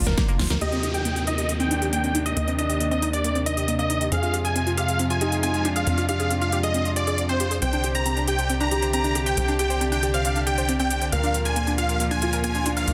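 A straight 4/4 pulse from a big-room electronic drum kit with a huge snare and crisp hats, opening with a drum fill and a band accent at 0.5 seconds, drives this soaring, emotional uplifting trance excerpt, where a tight, punchy sequencer bass, sidechain-pumped bowed strings with a reedy gut-string tone, and a round analog pluck arpeggio with chorus, tape echo and a filter sweep support a huge, detuned, sidechain-pumped supersaw lead from 0.6 seconds, joined by a very quiet supersaw stab, a natural baby grand piano with dub echo, and a faint downlifter and riser.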